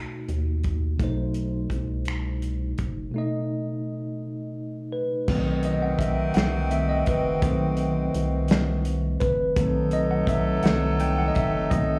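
Sultry and yearning, this slow six-eight R&B excerpt moves at 56 BPM, opening on a B7b9 chord from a mellow, worn tine electric piano that sounds slightly out of tune, as if heard through its built-in speakers. A rubbery, hollow square bass with a resonant filter pluck sits under a dark, smooth soul drum kit with tight kick, medium-tuned snare, hi-hat, finger snaps and crash cymbal, all set in a small room with light reverb. At 5.3 seconds the electric piano takes a solo while a distant, roomy jazz-style horn section adds tight stabs.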